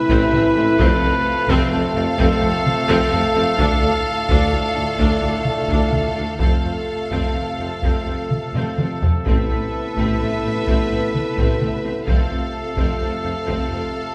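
Epic orchestral film score in a heroic 12/8 at 86 BPM, cut from a longer piece, where a lush violin section carries the melody over a softer second violin line and a bright viola accompaniment, while dark distant horns and bright trombones hold sustained chords, a warm solo trumpet punches out stabs, a very quiet cello section, mellow tuba and double basses anchor the bass, and a close, hard-stick taiko ensemble drives the pulse with a fill at 8.5 seconds, all moving through Amadd9, F and Dm in a reverberant concert hall.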